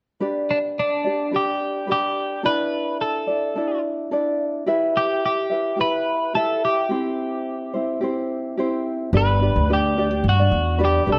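A light, thumb-plucked tenor ukulele opens this sunny, heartfelt pop piece in G major at 0.2 s, swinging gently on the sixteenths at 108 BPM. It is joined at 0.5 s by a bright, clean, compressed twelve-string electric guitar carrying the melody through plate reverb over a G, Dsus2, Em, C progression, and a woody, dark pizzicato upright bass steps up front alongside them at 9.1 s. The whole is cut from a longer piece and set in a moderate studio room with lossy compression artefacts.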